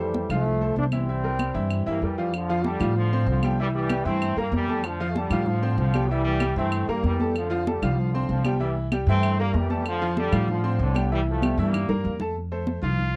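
Joyful and danceable, this short salsa excerpt moves in a straight four with a dry, close 1970s-style studio sound touched by light reverb. A clear, punchy trombone section opens the melody with light vibrato, handing over at 1.9 seconds to a brighter, more distant and roomy trombone section that carries the tune, tight and pop-styled, until around 12.2 seconds. Underneath, a brilliant upright piano with long sustain comps up front, while a thumpy pizzicato upright bass with steel strings anchors the low end. Ringing, high-tuned congas played with soft hands and woody claves keep the percussion bubbling, and a drum fill near the end leads into a brief, present trumpet note at 12.8 seconds. The harmony swings between F6 and C7 before settling back on F.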